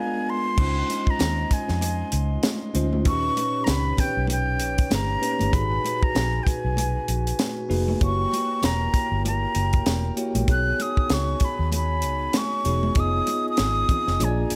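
A brief, lo-fi, slightly broken-up electric guitar riff opens this excerpt of lush, smooth and silky 1970s-style soul at 97 BPM, sounding alongside a breathy, close-miked concert flute melody, bell-like tine electric piano and glassy, ethereal glass harmonica chords; the guitar stops at 0.5 seconds, and at 0.6 seconds a tight funk drum kit with bright cymbals and a high-tuned snare, a dark, round, foam-muted fingered bass, and ringing, high-tuned congas in the background join, followed by a very quiet, jingly tambourine at 1.2 seconds, as the swung sixteenth-note groove moves through chords such as Dbmaj9, Abm9 and B69 in a small room ambience.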